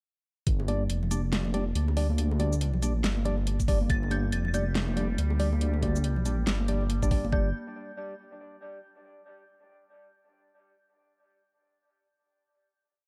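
A dark, close-sounding production with little reverb sets a cavernous, meditative mood for this short deep dubstep piece at 140 BPM, riding a half-time feel with swung 16ths. From 0.5 seconds a rumbling, detuned sawtooth bass sits up front, saturated through tube warmth and delivering chopped phrases, while a layered electronic kit supplies a huge snare, metallic hats and shaker in a tape-colored half-time beat. A knocking kick drum hits once at the start and returns at 3.6 seconds. Bright, compressed bongos and congas echo in the background, and a hollow, nasal organ stab plays off-beat chords, one shape moved in parallel, with chorus and dub echo. An eerie, inharmonic FM bell enters at 3.9 seconds with short call-like motifs high in the register, followed by a resonant drone with moving overtones, chorus and built-in reverb, before the drop gives way to a final chord.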